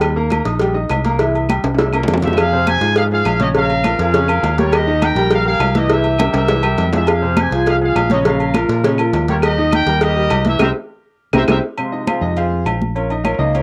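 A fiery, passionate salsa excerpt in F minor at 204 BPM opens with a clear, open concert grand piano and a dark, punchy fingered electric bass over ringing timbales and agogo bells, high-tuned damped congas, soft-handed low bongos with cowbell and vintage woody claves, before a tight, bright trumpet section with vibrato takes the melody from 2.2 to 11.6 seconds, a band accent arrives, and the piano takes a solo from 11.8 seconds over the continuing bass and percussion, all captured as a home cassette recording in a small, damp booth.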